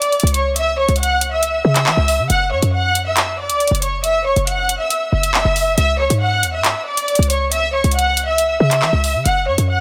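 A half-time drill groove in 4/4 drives this ominous, menacing hip hop passage, its electronic kit placing handclaps and warm hi-hats up front while a punchy, tight 808-style bass with a sine core, a noise layer and a fast, decaying attack joins at 0.2 s. Over it, a lush, bowed studio violin section carries the melody with smooth, even vibrato, moving between C# minor and F#5 chords in a light reverb. The passage is cut from a longer piece and runs just under 10 seconds.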